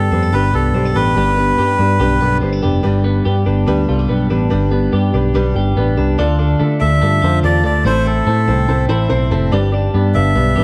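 Breezy and youthful, this indie pop excerpt puts a reedy, breathy melodica with slapback echo up front over a bright, twangy twelve-string electric guitar playing arpeggios through spring reverb, a round, foam-muted vintage electric bass, a woody, slightly detuned upright piano with audible action noise, and a very quiet fingerpicked steel-string acoustic guitar that drops out at 6.2 seconds, while the melodica pauses at 2.4 seconds and returns at 6.8 seconds as the chords move from G to Dm and Am in a dark, roomy studio sound.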